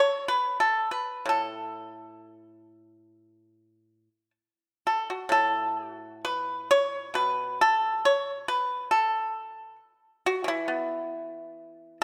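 Chinese traditional music for solo plucked strings, serene and flowing, unfolding in a free rubato over a four-beat frame in this short cut from a longer piece. A lone acoustic pipa, played with fingerpicks, carries everything up front with a dry, percussive bite across a span from low to high register. A moderate reverb of a scoring stage surrounds it, and the music moves into a new section at 5.3 seconds before the cut ends at 12.0 seconds.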